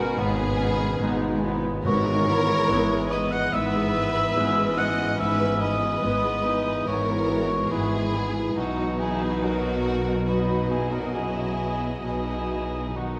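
Bittersweet and moving, this excerpt of a cinematic, emotional film score unfolds at 71 BPM in 4/4 with a rubato feel, tuned to A4 = 439 Hz. A distant, mellow cor anglais with light vibrato carries the melody alongside a smooth, even chamber violin section. Behind them, a pure, straight-toned concert flute with a crisp attack, a clarinet and a symphonic violin section with a soft attack and lush vibrato share the second line. A very quiet grand piano with brilliant tone, audible action noise and long sustain joins a focused viola section in the accompaniment, while a French horn section holds sustained chords and a distant double bass section and an expressive cello section anchor the bass. Timpani struck with hard mallets sound briefly and very quietly from 1.8 to 3.1 seconds as the harmony moves from G#m to E/G#, settling on B at 8.6 seconds, and a wet scoring stage reverb surrounds the orchestra.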